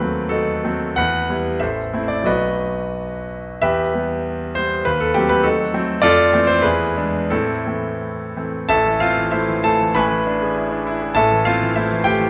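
A brooding, passionate romantic character piece for solo piano, this brief passage cut from a longer work finds a bright, polished concert grand with deep bass and long sustain sitting up front in a wet recital hall, its rubato 2/4 phrasing moving through diminished-seventh and dominant harmonies before a new section opens at 8.7 seconds.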